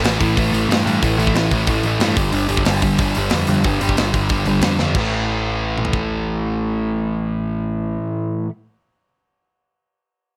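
Punk rock at 183 BPM in a straight 4/4, angry and aggressive, with a crunchy, double-tracked overdriven guitar riff up front over A5 and G5 power chords, a growling, bright overdriven picked bass, and a tight acoustic kit with a medium-tuned snare that plays a fill at 4.8 seconds before dropping out at 6.0 seconds, all in a dry studio sound in this short cut from a longer piece.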